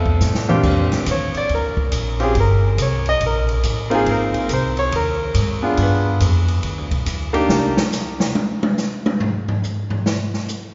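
Jazz piano trio at 140 BPM with a playful, sophisticated swing feel in Bb major. A short drum fill opens into a bright, polished concert grand solo over woody, growly pizzicato upright bass, moving through lush extended chords, until piano and bass drop out at 7.8 seconds. A drum solo on the open kit, with its dark cymbals and boomy kick, enters at 7.5 seconds and then carries on alone to the cut-off at 10.7 seconds, all bathed in a long church reverb with a soft, dulled top end.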